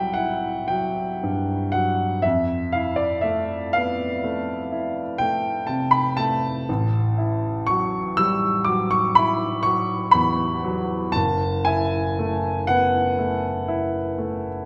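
A clear baby grand piano opens alone on a C chord, drifting through Fmaj7#11, Asus2 and F#m11 in a slow, rubato 9/8 at 40 BPM. The mood is mysterious and nocturnal, in an impressionist classical vein, with the instrument ranging from deep bass to high treble. Its natural, long-sustaining tone sits up front in a reverberant recital hall, and this short section of a longer piece ends at 14.7 seconds.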